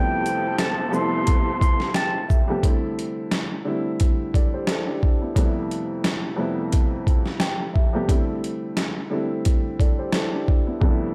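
A gritty, compressed sampler-style drum kit sits up front, entering at 0.3 seconds with a thumpy kick, a medium-tuned snare, rim click, shaker and hi-hat, all carrying the roomy weight of a kit re-recorded in a large space. This warm, soulful boom-bap hip-hop excerpt moves at 88 BPM in 4/4 with a 16th-note swing, in C major, alternating between Fmaj9#11 and C69 chords. A dark, woody upright piano plays accompaniment throughout, mellow and intimate, its vintage tone carrying audible action noise. In the opening bars, a nasal, breathy trumpet with a straight mute floats at a distance, playing a jazz-style solo melody with light vibrato, scooped notes and analog delay before falling silent at 2.3 seconds. Beneath it, a lush bowed string section holds expressive, smooth sustained chords in the background, only during that opening stretch. The hi-hats drop out at 10.8 seconds, and the whole piece sits in light reverb and studio ambience.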